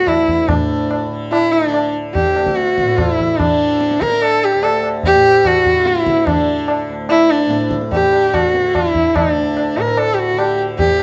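A clear, focused sarangi leads this serene, devotional passage of Hindustani classical music, its bowed line gliding between notes with light vibrato and portamento while its sympathetic strings ring beneath. Sitting close and up front, the single player's melody spans D4 to Bb4 and carries a slapback echo. Underneath, a softly plucked tanpura sustains a shimmering, buzzing drone from D2 to D3, set well back in the balance. A low-tuned tabla with a short ring joins at 0.1 seconds, keeping time in a straight 7/4 at 146 BPM in D major, tuned to A4 = 441 Hz. The sound is that of a dry, close 1970s-style studio recording touched by light reverb, and this 11-second excerpt is cut from a longer piece.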